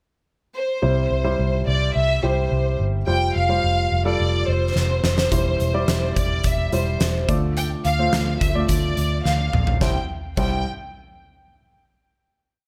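A smooth, up-front violin section carries a hopeful, anthemic melody built from hook phrases, with light vibrato and tape echo, over a woody upright piano playing syncopated chords with its action noise audible and a dark, foam-muted electric bass driving eighth notes. At 4.8 s a huge arena drum kit arrives with a fill, then its fat snare and punchy kick push a driving pop backbeat, and a second fill carries this short, complete piano-driven pop piece into a final C chord at 9.8 s. The mix sits in light reverb and small room ambience.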